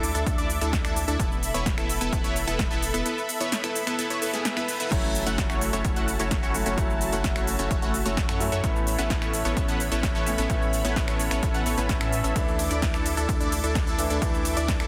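Festival progressive house in a triumphant, uplifting mood, this short cut from a longer piece moves in a straight 4/4 pulse through suspended and added-note chords. A punchy, detuned supersaw stab sits up front with a plucky filtered riff and delay, while a lush supersaw pad holds sustained chords in the background, and both breathe with sidechain pumping. Underneath, a deep, thick saturated sub bass pumps along, and an overdriven electronic kick hits hard from 0.3 seconds. A layered big-room drum kit adds a punchy snare, crisp hi-hat, ride, crash, shaker and finger snaps, all with overdrive and the air of a large room. A very quiet reverse cymbal leads into 4.9 seconds, where a clear grand piano with long sustain enters with accompaniment, pumping and echoing under the supersaws in a dense, heavily limited mix with light reverb.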